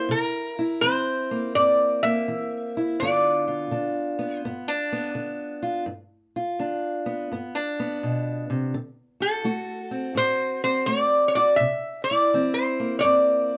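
Close, detailed microphones capture this short cut from a longer acoustic country blues in a small room with moderate reverb, giving a gritty, rollicking duo feel at 84 BPM in 4/4 with a swung eighth-note lilt in G mixolydian. Up front, a lap resonator guitar carries the melody between A4 and E5, its slide and fingerpicks drawing out a metallic, nasal tone. Beneath it, a fingerpicked steel-string parlour guitar supplies the accompaniment from G2 to F#4, sounding dark, woody and boxy on old strings, also placed up front but sitting lower in level than the slide. Both guitars play throughout the 13.6 seconds. The harmony moves through C7, G7 and D7 before returning to C7 at 11.6 seconds, keeping the rough-edged blues flavour rolling.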